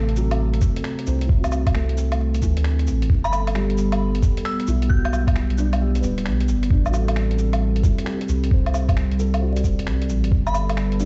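Future garage with a melancholic, nocturnal mood, this short cut from a longer piece moves in a swung 4/4 over a slow cycle of Am, Gadd9 and Am7 chords. A soft, round dub sub bass sits up front with a deep, sustained tone, while a dark analog pad holds moody, detuned chords with a slow attack, chorus and a moving notch. A woody, boxy upright piano plays mellow accompaniment coloured by vintage 12-bit sampler grit and tape echo, and the bass, pad and piano all pump with sidechain compression. The drums are muffled and compressed, re-recorded in a small room: a lo-fi sampler-style kit of cabasa, finger snaps, hi-hat and woodblock, plus a thumpy electronic kick that enters at 0.6 seconds. A glassy, crystalline FM synth bell carries a brief, warbling melody from 3.2 to 5.4 seconds, treated with chorus, phaser and tape echo, and it returns for a short moment near 10.5 seconds. The whole mix sounds as if it were played on a big sound system in a bare stone room, with vinyl crackle and a dulled top end.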